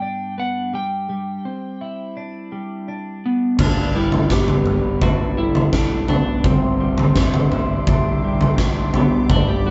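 Post-rock with a hopeful, soaring mood, moving between G and Cadd9/G, where a dark, slightly broken-up slide guitar played with fingerpicks carries the melody over a clean, twangy, compressed twelve-string electric guitar picking arpeggios in the background. At 3.6 seconds the rest of the band enters: a huge arena drum kit, up front in a big room with a fat snare, punchy kick, crash cymbal and toms; a very quiet, growly fuzz bass; a very quiet, mellow vibraphone with soft mallets and the motor off ringing out arpeggios; and a brassy, detuned sawtooth pad with chorus and a filter sweep sustaining chords in the background. The group sounds like it is playing live in one room, with moderate reverb and a muted top end.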